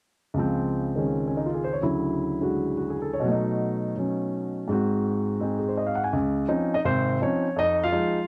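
A grand piano plays alone and up front, its tone warm and close, carrying this short solo jazz passage in Db major from 0.3 to 8.3 seconds. The mood is relaxed and swinging, with a brisk 167 BPM pulse in 4/4 and eighth notes swung at 65%. The piano covers a broad span from Ab1 up to Ab5, moving through Dbmaj7, Dmaj9, Cb7 and Ab7 in the opening section before a second section starting at 6.1 seconds brings Dbmaj9 and Fm7. The instrument is tuned slightly low, to A4 = 438 Hz. A light reverb and the grain of cassette tape color the sound, and the passage is cut from a longer piece.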